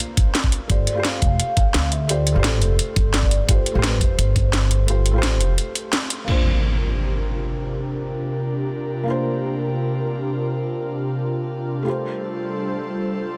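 A felt-muted upright piano, dark and intimate with audible action noise and dub echo, opens this rolling, lush liquid drum and bass excerpt alongside a filtered kit of cracking snare and metallic hats. A knocking electronic kick, a woody pizzicato upright bass up front and a mellow soft-mallet vibraphone melody with dub echo in the background soon join in. After a short break, an impact lands at 6.3 seconds and the drums fall away, leaving the piano beneath an airy, breathy pad with chorus and sidechain pumping that carries through to 13.4 seconds in a dry, dense, heavily limited mix.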